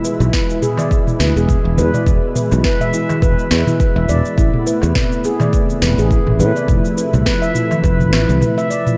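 A detuned sawtooth analog pad with chorus, sidechain pumping and shimmer reverb holds smooth chords while a ringing, mellow handpan plays meditative arpeggios through delay and an afro-pop drum kit adds cabasa, toms and a sharp, tape-warm snare, opening this hypnotic organic downtempo piece at 104 BPM in E phrygian dominant, shortly joined at 0.2 seconds by a growly, up-front fretless electric bass with sidechain pumping and a very quiet, crisp metal-shell darbuka, then a deep electronic kick, all moving from E to Amadd9 to Fmaj7 in a dark, lush hall before a brief break at 8.4 seconds in this portion cut from a longer track.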